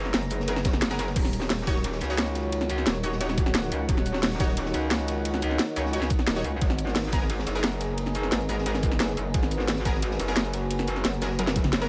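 A straight 4/4 drum and bass groove drives this dark, mechanical cut of technical drum and bass, taken from a longer piece. Up front, an overdriven electronic kick knocks hard from 0.6 seconds, while a layered, overdriven drum and bass kit supplies a cracking snare, bright hats, crash, shaker and toms, backed by a very quiet, gritty breakbeat kit with a high-tuned snare and dusky cymbals under a rolled-off top. Beneath them, a metallic wobble bass snarls with FM grit, chorus and overdrive, bright and aggressive at the front of the mix. Two moody, detuned pads sit in the background, a full-bodied analog one and a deeper ambient one bathed in its own reverb, both pumping against the sidechain as the harmony moves from Abmadd9 to Ebm7 and back. A bold, punchy orchestra-hit-like stab enters at 0.5 seconds, its bright, unison sawtooth attack trailed by reverb and delay, and a drum fill closes things out at 11.4 seconds inside a light overall reverb.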